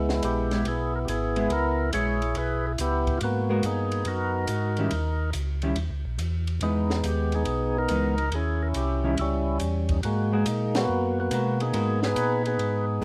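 A close, detailed recording in a moderate small room gives this bluesy, smoky soul jazz organ trio excerpt an intimate, present sound. A percussive tonewheel organ carries the melody through a slow rotary speaker, its full tone marked by second-harmonic percussion and key click, while a second tonewheel organ supplies a mellow, round bass line with vibrato, also turning through a slow rotary speaker. Both organs sit up front. A compact cocktail drum kit enters at 0.1 seconds, its dark, smooth kit featuring a high-tuned snare, a punchy kick, hi-hat and ride cymbal under a swung eighth-note feel. A clean, fingered hollow-body electric guitar joins at 0.5 seconds with dark accompaniment over minor-ninth, major-seventh and altered dominant harmony, and the whole band hits a shared accent at 10.7 seconds.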